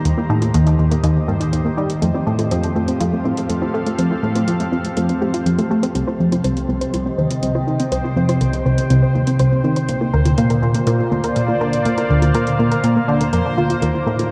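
A swirling, phased analog pad fades in together with a resonant, bubbling stepped-filter texture alongside a soft, round pluck arpeggio, joined at 0.1 seconds by an up-front, driving sequenced synth riff and metallic electronic hi-hat and bongos, all floating in a vast cathedral reverb to give this excerpt of ambient, sequencer-driven space music a hypnotic, expansive feel over chords moving from Eb through Fadd9 and Cm to Bb.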